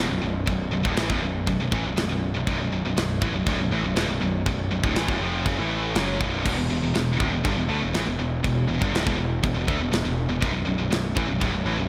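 Two distorted, high-gain guitars, one set further back, grind out a riff alongside a growly, fuzz-drenched picked bass up front, and a tight metal drum kit with bright cymbals, china and crash crashes in at 0.5 seconds, driving this aggressive, epic heavy metal excerpt at 121 BPM in B minor through a shift from B minor to E5 at 6.5 seconds and back at 10.4 seconds, all bathed in a lush hall reverb that gives it a big arena sound.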